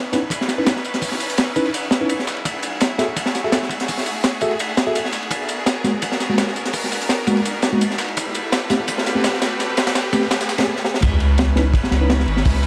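A drum and bass cut with jungle roots, frenetic yet atmospheric, built as a long build-up that breaks into a drop at 11.0 seconds. Bright, close studio strings bow sustained minor ninth chords with intense vibrato, while a mellow tine electric piano plays stabs through a low-pass filter and dub echo. Up front, a crunchy breakbeat kit with a tight kick, high-tuned snare, dark cymbals and a rolled-off top drives the rhythm, backed in the background by a dusty, overdriven sampler-style kit of hi-hat, snare and tambourine. A very quiet electronic riser and sub drop sit beneath the build, and a drum fill at 10.8 seconds leads into the drop, where a deep, thick, saturated sine sub bass enters up front. Moderate echo-chamber reverb, small-room ambience and vinyl crackle surround the mix.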